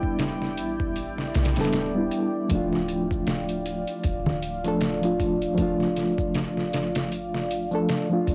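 Swung sixteenths at 78 BPM drive this smoky, dark trip hop excerpt in D dorian, built on a compressed, pitched-down sampler kit with a thumpy kick that drops out from 1.0 to 2.5 seconds, a soft, round 808-style sine bass, a reedy electric piano up front with harmonic tremolo, tape echo and cassette tape, and a deep, detuned sawtooth pad with chorus and reverb moving from Em7 to Dm, while close, dry egg shaker and hard-hand congas join at 2.5 seconds in a lightly reverberant home cassette recording.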